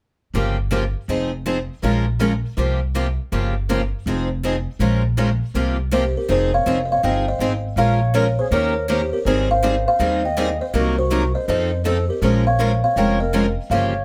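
A bittersweet, swinging excerpt of acoustic string swing in F minor at 162 BPM opens at 0.3 seconds with two bright, picked acoustic guitars comping, one steel-strung and up front with finger squeak and the other boxy, over a woody, thumpy pizzicato upright bass on gut strings, until at 5.9 seconds a buzzing, hollow-toned kalimba takes the melody with plate reverb and a distant, breathy clarinet adds a whispered, subtone second line with vibrato and scooped notes.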